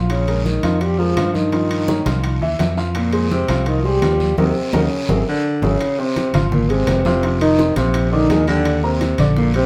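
A straight 4/4 groove at 168 BPM in F minor drives this fiery, sultry Afro-Cuban jazz passage, with bright congas, round low-tuned bongos, ringing metal-shell timbales and a raspy guiro sitting behind a dark, punchy fingered electric bass up front and a woody, slightly detuned upright piano. A veiled trombone in a bucket mute carries the melody with light vibrato, while a gritty, growling tenor saxophone with scooped notes plays a second line beneath it. Heard from further back in a reverberant studio, the band hits an accent from 4.4 seconds with a drum fill at 5.3 seconds before moving into a new section at 5.8 seconds over chords such as Fmadd11 and Ebmaj7.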